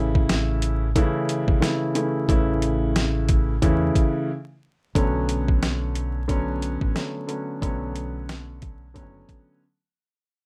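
Moody and dark, this boom-bap hip-hop excerpt at 90 BPM in B minor swings over a gritty, compressed, pitched-down sampler kit with a thumpy kick and medium-tuned snare, a round, punchy fingered electric bass, and an intimate, mellow grand piano with audible action noise and long sustain, set in light reverb and vinyl crackle, with a break at 4.3 seconds and a fade-out from 5.0 seconds.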